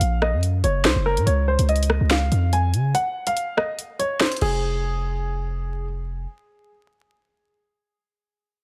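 Menacing and dark, this drill track moves at 143 BPM in 4/4 with a half-time feel, set in F phrygian, and it comes from a longer piece. A dark grand piano carries the melody between Ab4 and Ab5, its worn, intimate tone filtered through a low-pass, with audible action noise and short sustain sitting up front. Beneath it, a hard-hitting 808-style bass ranges from F1 to Db3, punchy and heavy with a sine body, a noise layer and a fast, decaying attack, while an electronic drill drum kit supplies crash cymbal, hi-hat, rim click and a sharp snare alongside warm hats. The chords move from Gb to Db before the harmony drops out for a break from 2.9 to 4.6 seconds, returning on Fm. The drums stop at 4.5 seconds and the piano at 5.8, leaving the bass to ring until 6.3 seconds as vinyl crackle from a digital ambience hangs over the mix.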